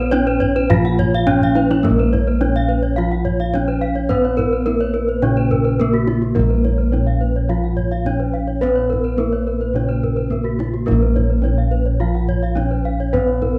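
Bossed bronze gongs stand out most in this brilliant, shimmering excerpt of Balinese gamelan, their round, beating tone sitting bright and up front as they carry the bass line from the start. Above them, a bronze metallophone struck with a wooden mallet leads the melody, its paired tuning producing shimmering beats, while a second metallophone in the background supplies accompaniment with a vintage, band-limited ring. Two further metallophones spin arpeggios in the upper register, one close-miked, dry and full, the other played with a horn mallet for a keener, brighter edge. A kendang adds deep, soft-handed drumming from the back of a live room, with a drum fill at 1.3 seconds leading into the longer second section at 1.9 seconds. The piece moves at 106 BPM in a straight 4/4 in Bb pelog, set in a moderate recital-hall reverb with a dark overall production.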